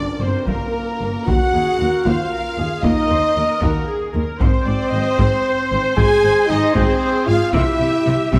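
Mellow French horns sit up front with sustained chords in this dark, epic orchestral film-score excerpt in 6/8 at 76 BPM, joined by punchy, distant trumpet stabs, a close taiko ensemble struck with hard sticks from 0.5 s, lush bowed violins in the background carrying the melody and a second line, clear violas in accompaniment, and rich cellos and double basses on the bass, the ensemble heard in a moderate scoring-stage reverb as the harmony moves from Gm through Ebm and Ab to C.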